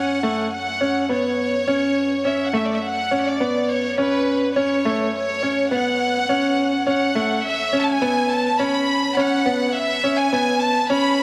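Piano and strings electronica with an intimate, moving mood, this short excerpt sits inside a build-up that runs the full 11.2 seconds. A clear, worn grand piano plays an up-front riff in a low-middle register, its tone natural. Above it, a rich studio violin section carries the melody, bowed sul tasto with light vibrato and a soft attack, giving the ensemble a close, intimate presence. Far beneath, a round sine sub bass with a fast attack and a mellow, sustained body sits in the background, filtered at the low end. A huge, wet ambient reverb surrounds the sound, and the harmony moves from F#5 to E5 at 7.4 seconds.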